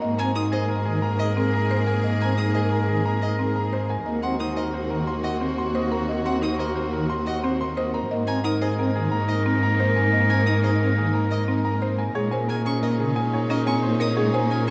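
Urgent yet meditative, this excerpt of minimalist classical pattern music in 6/4 sets a bright, brilliant baby grand piano melody over a clarinet second line, a very quiet principal pipe organ, a lush studio string section holding sustained chords, woody buzzing marimba and distant violin arpeggios, and an expressive, up-front cello bass with portamento, all bathed in a huge ambient reverb that suggests a vast, echoing space.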